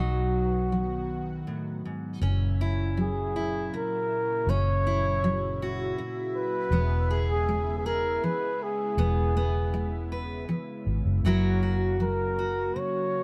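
Acoustic folk-pop ballad in a slow 3/4 at 80 BPM, intimate and heartfelt, heard as a short cut from a longer piece. A mellow flugelhorn carries the melody up front in a jazz-styled solo voice, its soft attack and light vibrato sitting over a full-bodied, fingerpicked steel-string jumbo acoustic guitar. Beneath them, a vintage muted fingered electric bass gives a round, amped, foam-muted low end, dropping out at 12.7 seconds just before the close at 13.2 seconds. An analog string pad holds sustained chords further back, its silky, detuned sawtooth tone brightened by wave-folding, a moving notch, vibrato and ensemble chorus. The harmony opens on B, then moves through F#7 and C#m7/E before returning to F#7, all set in light reverb within a dark, warm production.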